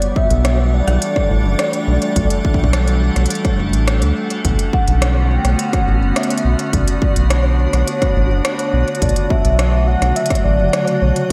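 A straight 4/4 pulse at 105 BPM drives this eerie, cerebral IDM excerpt in B minor, where a heavy, up-front electronic kick (0.2 to 10.4 s) and an industrial kit of crisp hats and rim clicks with delay sit beneath a deep, round analog bass warmed by tube saturation, an icy, crystalline glass pad holding sustained chords from A7sus4 to Bm9, a velvety synth lead melody with chorus, vibrato and delay, and a very quiet, grainy flickering texture, all bathed in a dreamy, lush hall reverb.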